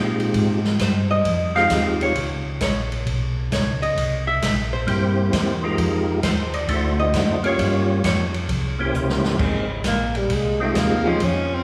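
Bathed in a wet concert-hall reverb with a touch of small-room ambience, this smoky, late-night soul jazz organ trio excerpt swings in 4/4 at 133 BPM in F minor. A percussive tonewheel organ with key click and fast rotary speaker carries the melody over a round, mellow organ bass, an acoustic drum kit with dark cymbals and a boomy kick, and a clean, picked hollow-body archtop guitar that takes a solo, capped by a drum fill at 8.9 seconds. At 9.9 seconds a breathy, up-front tenor saxophone enters with subtone and scooped notes to begin its own solo.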